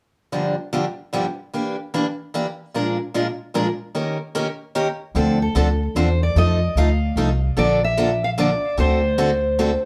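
Acoustic string swing in the jazz manouche style, this excerpt cut from a longer piece moves at 149 BPM in 3/4 with a lively swung feel in D minor, sounding swinging and virtuosic. A picked steel-string acoustic guitar opens alone at 0.3 seconds with accompaniment, its fresh strings giving a warm dreadnought body as it moves through Gm7, Em7b5, Bb7 and Eb7. At 5.1 seconds a pizzicato upright bass enters, woody and dark and set up front, just as the harmony shifts to Dm7, F7, Bbmaj7 and D7. Moments later, at 5.4 seconds, a second picked steel-string guitar takes the melody in a high register, its bright parlour tone dressed in plate reverb and tape echo. The whole group sits in a reverberant studio room, heard from a little further back, lending the close, up-front instruments a sense of surrounding space.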